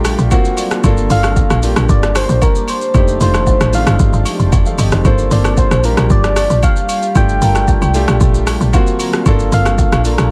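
Deep and hypnotic, this amapiano excerpt moves at 114 BPM in a straight 4/4 feel in G minor, cut from a longer piece. A woody, punchy log drum bass sits up front with a fast attack and decaying tone. It is joined by a deep house drum kit of hi-hat, deep kick, rim click and shaker that sounds layered and tape-warm, re-recorded in a small room. A concert grand piano with a rich low end carries the accompaniment, adding fills from 0.0 to 0.8 seconds and again from 8.5 to 9.3 seconds. Meanwhile, a round, keys-like struck synth lead with chorus, vibrato and digital delay carries the melody. Behind them, a glassy, ethereal FM pad warbles with ensemble chorus and built-in reverb, holding mellow sustained chords. Close, dry agogo bells and woodblock with egg shaker and group handclaps sit in the background. The harmony circles through D7alt, Gm9, F13 and Gm11 before returning through D7alt to Gm9, all set in a digital ambience.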